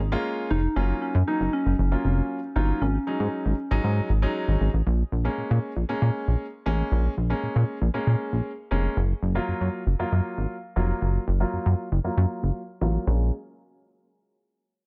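A glossy, chorused synth bass opens this confident, energetic dance-pop excerpt at 117 BPM in Bb minor, joined by a present, polished baby grand piano whose filter sweeps from 4.9 to 13.1 seconds over Bbm7, Gbmaj7 and Ab7sus4 chords, while a round, keys-like FM lead with chorus, vibrato and tape echo carries a brief melody until 4.4 seconds in a dry mix.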